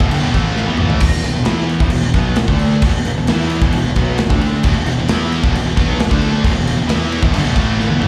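A gated 80s drum kit with a punchy kick sits up front in this heavy, driving hard rock excerpt at 133 BPM, its bright cymbals and medium-tuned snare ringing in a stone-like gated room, with drum fills at 0.6 and 7.8 seconds. Beneath it, a fuzzy, overdriven picked electric bass pushes alongside a hollow-bodied overdriven semi-hollow guitar and a double-tracked tight distorted guitar, all riffing from 0.0 to 8.1 seconds over Em moving to E5. A bright high-gain guitar with slapback echo joins the background riffing briefly at the start and again from 4.7 seconds, the whole band heard as a live club gig through the venue's PA in a small room.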